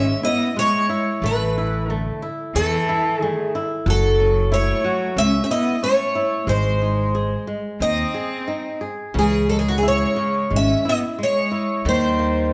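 Unfolding in a rubato 4/4, this passionate, longing fado-style ballad is cut from a longer piece, with a bright, shimmering, octave-doubled picked twelve-string acoustic guitar carrying the melody up front through a lush chorus. Beneath it a single bowed cello sings a close, expressive second line with vibrato, soft attack and portamento, while a fingerpicked flamenco guitar supplies accompaniment with audible finger squeak and a woody pizzicato upright bass anchors the low end up front. All four parts play throughout the 12.5 seconds in a moderate recital hall reverb, moving through C#m, A5, F#m7 and G# before returning to C#m and closing on D#.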